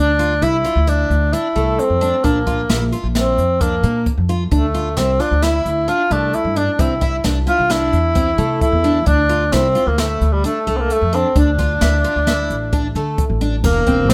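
A tenor saxophone with light vibrato and a soft, roomy attack carries the melody from the start over shimmering, octave-doubled twelve-string acoustic guitar arpeggios and woody pizzicato upright bass, with a brushed jazz drum kit of dark cymbals and a boomy kick joining at 0.2 s in this intricate, tense progressive instrumental in 5/4 at 132 BPM in D minor, moving through Dmadd9, Bbsus2, Dsus2 and Am/C under light reverb in a passage cut from a longer piece.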